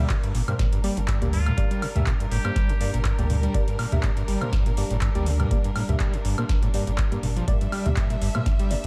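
Trippy and raw, this acid house excerpt runs at 122 BPM in G dorian with a swung sixteenth feel, built on a squelchy, gritty overdriven acid bass riff with distortion, chorus and delay, a round sine sub bass and clear, lush bowed strings that both pump against the sidechain, soft detuned chord stabs that warble with chorus and delay, a tape-warm electronic kick and a booming analog drum machine of crisp snare, metallic hats, handclaps, toms and woodblock, while a nasal trumpet with a straight mute adds a brief delayed phrase from 1.3 to 3.0 seconds over a held G minor chord in light reverb.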